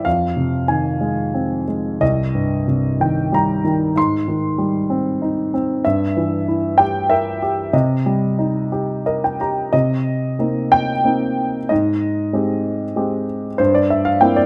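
A dark, mellow grand piano carries this short classical excerpt alone, its worn, intimate tone sitting up front with audible action noise and a short sustain, caught by close, detailed microphones in light reverb. The mood is cool and moody, in C minor and 3/4 with a rubato feel moving at roughly 87-98 BPM, drifting through chords such as Fm7, Cm7 and Abmaj7. A brief piano fill at 8.7 seconds leads into a new section at 9.7 seconds, which closes on a C7/G chord as it is cut from a longer piece.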